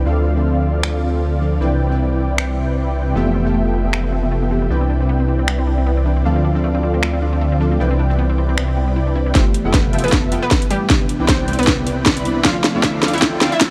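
Riding a half-time 155 BPM groove with a light 16th-note swing, this playful, lush future bass passage in C major sets a thick detuned saw bass and a fat, bold polysynth riff over glassy digital keys and a very quiet ethereal pad, with a trap kit of sharp snare, metallic hats and finger snaps entering at 0.8 s, a background unison pluck arpeggiating from 3.2 s before turning to melody at 9.3 s alongside an overdriven punchy kick, a drum fill, filter sweeps and a faint riser building to the cut.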